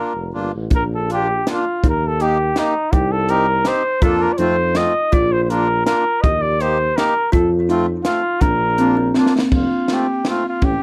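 A clear flugelhorn and a reedy, single-reed accordion with dry tuning open this bouncy, festive alpine dance-band piece in Bb major, a brief cut from a longer work. It moves at 164 BPM in 3/4 with a rubato feel, and the flugelhorn sits up front, playing the melody in a classical style with light vibrato and a vintage tone. A warm tuba, distant and roomy with its own gentle vibrato, anchors the bass. From 0.7 seconds a woody, hollow-box kalimba adds a short, thumb-plucked second line through tape echo, and a compact cocktail drum kit arrives at the same moment, acoustic and dark with a high-tuned snare, punchy kick and rolled-off top. A drum fill at 9.2 seconds leads into a new section at 9.5 seconds, while the chords cycle through Bb, Eb, Cm and F, and close, detailed microphones with a touch of reverb give the band an intimate presence.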